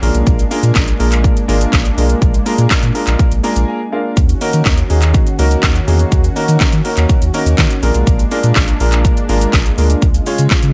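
Driving, energetic dance-pop cut from a longer piece, built on an up-front house drum kit with punchy kick, cracking snare, metallic hats, handclaps and shaker, a deep, round sine sub bass and a warm, present grand piano, both pumping with sidechain like the mellow, detuned analog pad that sits chorused in the background, while a very quiet, jingly tambourine joins at 0.8 s and the piano plays a fill from 3.2 s into a brief break at 3.7 s, in a dry, close-sounding mix.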